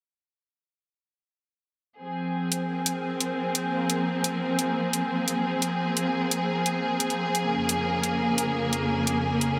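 Spacious and dark, this half-time drum and bass passage moves at 174 BPM in 4/4 with a swung sixteenth feel, sitting in F minor and cut from a longer piece. A rich symphonic string section enters at 2.0 seconds, holding lush, bowed chords with smooth vibrato up front, its tone shaped by a low-pass filter that sweeps across its whole span. An electronic hi-hat arrives at 2.5 seconds, bright and overdriven, its layered, produced hats sitting forward in the mix. From 2.7 seconds a reversed, swelling texture hovers in the background, a detuned, granular triangle tone with slow attacks and long releases, coloured by its own reverb and lush chorus. The harmony moves from Fm to Bbm7/F at 7.5 seconds, and the whole mix is soaked in a huge ambient reverb that gives it a dreamy, cavernous depth.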